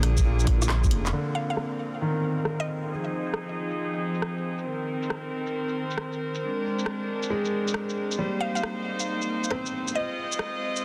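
Future garage in C minor at 136 BPM with a swung 16th feel, ghostly and nocturnal, where bowed, earthy chamber strings hold pumping, filter-swept chords throughout over a thumpy, muffled kick and a menacing detuned saw bass that both drop out by 1.1 s, leaving tape-warm garage handclaps, hats, rim clicks and shaker under a filter sweep, a glassy drifting harmonics texture, a woody upright piano with tape echo, and a round, mallet-like FM pluck melody, all moving through Cm7, Fm7 and Bb7 chords in a dense, heavily limited mix.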